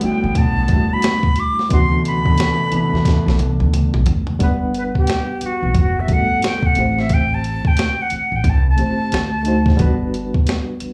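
R&B and neo-soul in a smooth, relaxed 89 BPM swing in G major, where a breathy, bright flute carries the melody up front and takes a solo from 4.4 seconds over a reedy, slightly out-of-tune electric piano with tremolo, while dark, punchy horn stabs play until 4.0 seconds, a woody, growly pizzicato upright bass holds the low end, and a gritty, compressed boom bap drum kit with finger snaps and a thumpy kick plays a fill at 3.1 seconds, all in the club ambience of a live gig heard through the venue's PA.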